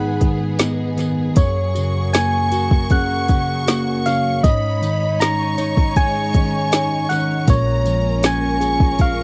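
Pop ballad at 79 BPM in F# major, heartfelt and hopeful, in which a round, gentle FM synth lead with chorus and vibrato carries the melody over a clean tine electric piano, a lush bowed string section and a biting violin section on a high second line, while a fingerpicked plugged-in steel-string acoustic guitar arpeggiates in the background, a smooth R&B drum kit with a soft kick and woody snare sits up front from 0.2 seconds, and a jingly tambourine joins at 0.6 seconds, all in a dry, close 1970s-style studio sound with light reverb.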